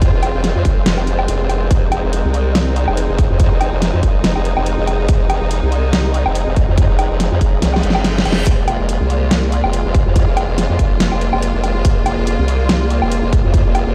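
Heavy wobble dubstep at 142 BPM in F minor, menacing and half-time with a light swing, this excerpt sits on a single F minor chord as a saturated, detuned wobble bass with a formant filter, chorus and overdrive growls up front beneath lush bowed strings holding sustained chords that pump against the beat. A punchy, overdriven electronic kick leads the mix alongside a tape-warm drum kit with a huge snare, bright hi-hats and woodblock. A drum fill from 7.6 s brings in a brief electronic reverse cymbal at 7.8 s, and the whole track sounds as if played through a big sound system in a bare room with large studio reverb.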